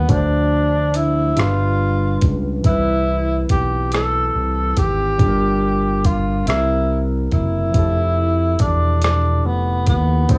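Dry home-cassette sound with a faint studio ambience frames this intimate, tender slow six-eight R&B fragment, where a breathy, whispered tenor saxophone sings the melody up front with vibrato and scooped notes over a barky tine electric piano colored by phaser, a dark, gliding synth bass with portamento, and a gritty, overdriven sampler-style drum kit of thumpy kick, hi-hat and rim click, all moving through chords from Dm7 to Fmaj9.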